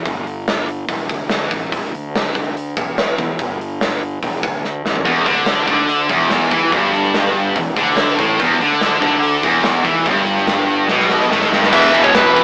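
A rough rehearsal-room recording with light reverb, saturated grit and an AM-radio tint carries this swaggering, energetic hard rock excerpt, which opens on a growly, fuzz-drenched fingered bass and a gated 80s drum kit with a punchy kick and a medium-tuned snare in a bright, gated stone room, with fills at 4.6 and 10.9 seconds. At 5.1 seconds three picked guitars join on the riff: a high-gain distorted one up front, a scooped high-gain one in the background, and a double-tracked overdriven one behind them. At 11.7 seconds a dark, bluesy lead guitar takes the melody up front while a biting overdriven guitar adds a second line behind it.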